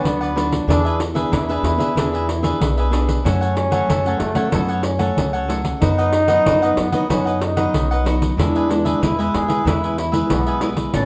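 Samba and choro at 94 BPM in a straight 4/4, sunny and joyful, this short cut from a longer piece features a bright, punchy trombone taking a forceful jazz-style solo with light vibrato, sounding distant and roomy. Beneath it, a crisp picked cavaquinho and a small fingerpicked nylon-string guitar supply accompaniment, a woody pizzicato upright bass holds the low end, and a jingly pandeiro played with soft hands enters at 0.1 seconds, close and acoustic. The band plays live in one room under a wet studio reverb, moving through chords from Bm/D and E7 to F#m, B/F# and E.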